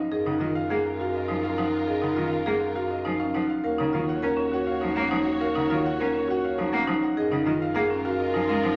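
Heard in a moderate recital-hall reverb, this short fragment of hypnotic, propulsive minimalist classical pattern music moves at 102 BPM in 3/4 in F# major: an up-front, woody marimba on rosewood bars spins arpeggios beneath a brilliant grand piano melody whose action noise is audible, while a dark clarinet carries a second line in the background, a lush studio string section sustains chords, a single bowed cello with focused vibrato adds accompaniment, and a solo bass clarinet supplies the bass as the harmony shifts from F#maj9 to D#m7 at 3.6 seconds and back at 7.2 seconds.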